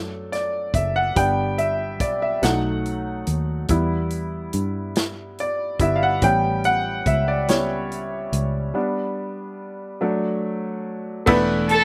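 A clear, worn grand piano sits up front and carries this jubilant, uplifting slow gospel excerpt in 6/8 with a solo, its slapback echo adding a gentle doubling, and a break from 8.8 seconds. Beneath it a dark, round fingered electric bass moves through the changes from D to G, B7, Em and A7, while a natural country drum kit with a punchy kick, medium-tuned snare, hi-hat and crash cymbal enters at 0.3 seconds. Just before the cut, at 11.7 seconds, a lush, bowed symphonic string section arrives up front with rich vibrato on a single note over an E7sus4 chord, all in a dry, close sound.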